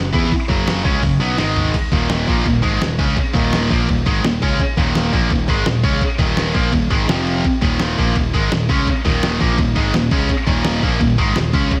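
A double-tracked, high-gain distorted guitar sits up front with a bright, picked power-chord riff, driving this heavy, relentless heavy metal excerpt through a straight 4/4 feel in light reverb. A growly picked electric bass holds the low end in the background, while a lo-fi, sampler-style drum kit with a pitched-down, muffled sound, thumpy kick, medium-tuned snare, hi-hat, crash and toms keeps the pulse. A short drum fill at 1.4 seconds leads into the main section at 1.7 seconds, where the riff settles on Eb5 with a brief move to F5.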